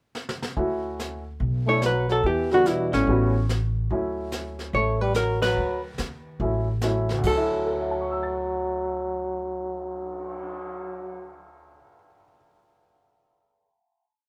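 A dark, clean archtop guitar leads this relaxed, warm small-group swing and bop piece at 144 BPM in D major, picking a bebop-style theme from 1.7 seconds with plate reverb, while a punchy, close-miked trombone with light vibrato plays a harmony line mostly in thirds. Upright piano adds woody, vintage syncopated comping in rootless voicings, a growly pizzicato upright bass keeps a two-feel, and a brush kit with dark cymbals and a boomy kick sweeps the snare after a short opening fill. The band hits an accent at 5.4 seconds before settling onto a final chord at 7.2 seconds, the group heard from further back in a wet booth.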